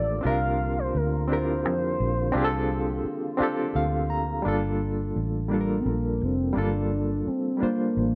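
Slow R&B in 6/8 at 57 BPM, this sultry, late-night excerpt in G minor is cut from a longer piece and moves from a C9sus4 chord to Gm9 at 4.4 seconds. A smooth, gliding synth lead with a soft attack, sawtooth and sine tones, detuning, vibrato and chorus carries the melody from G3 to F5, taking a soft solo over the opening 4.4 seconds. A barky, reedy electric piano, bright and lightly overdriven with fast tremolo through its built-in speakers, sits up front in the accompaniment and adds a fill from 3.4 seconds. Underneath, a dark, round, foam-muted fingered electric bass plays punchy and amped from F1 to F2. A very quiet tonewheel organ holds fat sustained chords with key click, chorus vibrato and a slow rotary speaker, then stops at 4.4 seconds as the second section begins, all within light reverb.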